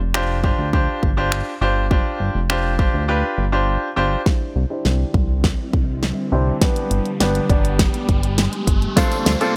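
A punchy, polished dance-pop sound in digital ambience opens this upbeat, euphoric fragment of a longer piece, with a layered electronic drum kit of kick, fat snare, hi-hat and finger snaps sitting up front. Beneath it, a glossy, nasal chorused synth bass with a pulse-wave and sawtooth bite pumps against the sidechain, while a brilliant baby grand piano with audible action noise and short sustain plays accompaniment, also pumping and filtered. After a silent gap, the music moves over Cadd9 and G into a build-up from 4.3 seconds, carried by a drum fill and a filter sweep. A glassy, ethereal FM pad with ensemble chorus and built-in reverb adds mellow sustained chords in the background, and an electronic riser climbs underneath from 6.4 seconds. At 9.0 seconds, as the harmony lands on Dm7, a clean, direct-recorded electric guitar slips in a brief compressed riff with analog chorus, joined by a jingly, close and dry tambourine.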